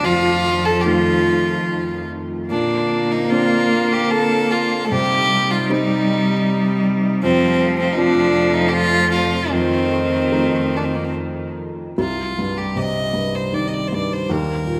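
A long, wet church reverb surrounds this fragment of a Celtic slow air, giving its longing, mournful mood a spacious, hallowed air. Set in a lilting triple metre with a free, rubato feel, a solo fiddle carries the melody up front, its tone clear and earthy with a light vibrato on each bowed phrase. Beneath it, a single cello plays a smooth, even second line with steady vibrato, while a felt-muted upright piano supplies a mellow, intimate, slightly boxy accompaniment, its soft hammers and audible action noise close at hand. A dark studio string section sits furthest back, holding sustained chords bowed sul tasto with a soft attack. The cello falls away at 11.5 s and the strings at 11.9 s, so that when a new section opens at 12.0 s, only the fiddle and piano carry the music through Cm to a final Eb5.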